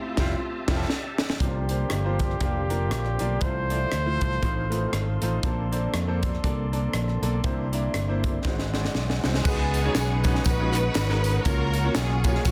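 Lush bowed strings and a very quiet, key-clicking tonewheel organ with rotary speaker open this jubilant, hopeful uptempo gospel excerpt at 119 BPM in swung 4/4 and F major with a band accent. A bright concert grand piano soon joins, while a punchy, amped fingered electric bass and a gritty, saturated fusion kit with a high-tuned snare drive it up front. A close-miked trumpet with light vibrato takes the melody from 1.4 seconds while an ethereal glass harmonica hums in the background, and the strings return at 9.4 seconds alongside background tambourine, maracas and group handclaps. Rich chords such as Fmaj9, C9sus4 and Ab7alt sit in a dry, dense, heavily limited mix.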